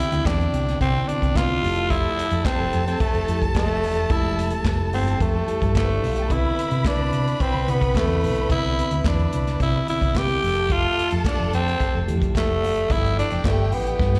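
A growling tenor saxophone carries the melody of this celebratory, glamorous disco excerpt up front, with a raspy, breathy edge and slapback and tape echo, while a close violin section with vibrato and portamento carries a second line and a mellow tine electric piano, phased and set in the background, fills out the Cmaj9 and Fmaj9 harmony. Beneath them a soul drum kit with handclaps, hi-hat, a tight kick and a medium-tuned snare sounds distant and roomy with a rolled-off top, and a dark, round hollow-body electric bass joins at 0.1 seconds. The whole band comes across as a live gig heard through the venue's PA with recital hall reverb, closing on a G13 chord and a drum fill at 14.0 seconds.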